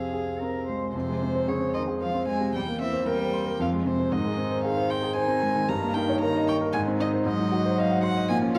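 Urgent and restless, this quick classical-period movement for piano trio drives forward in F minor at 114 BPM in a straight 3/4. The clear grand piano carries the accompaniment from the start, sitting up front with an intimate, natural presence and audible action noise, reaching from E2 to Db6 and standing louder than the strings. A rich violin sings the melody between C5 and Bb5, played bowed sul tasto by one player with a soft attack and a pure, floating tone. Beneath it, a single warm cello plays a second line from C3 to C5, also bowed sul tasto, soft in attack and slightly distant. The harmony moves from Fm through C7/E back to Fm, then turns toward Ab, Eb7/G and Ab7 across the section that begins at 0.9 seconds. Cut from a longer piece and running to 8.6 seconds, it is heard in a wet recital hall reverb, with lossy compression artefacts.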